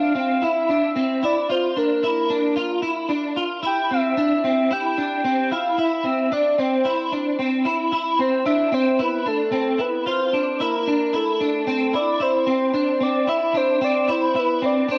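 Melancholic and ethereal, this dream pop fragment at 112 BPM in straight 4/4 sets a round, wave-folded synth lead with sub octave and vibrato, singing the melody between A4 and G5, against a compressed, slightly broken-up electric guitar picking arpeggios from C4 to F4, both up front and coloured by chorus, cassette tape and analog delay, all within a wet spring reverb and home cassette recording as the harmony moves between Cadd9 and Bb.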